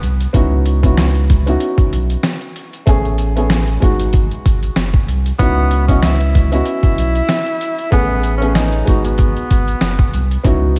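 A dusky, gritty boom-bap hip-hop excerpt with vinyl crackle, light reverb and small room ambience, moving at 95 BPM in C# minor with a lightly swung feel over C#m11, Amaj9 and G#m7 chords. A compressed, pitched-down sampler-style drum kit with a thumpy kick and medium-tuned snare sits up front beside a deep, round sine sub bass, while a woody, short-sustained upright piano with cassette tape colour fills in the harmony throughout. A breathy tenor saxophone with vibrato, subtone and scooped notes briefly sounds at the very start, then returns to play a jazz-style solo melody from 5.4 to 10.4 seconds, softened by filtering and delay.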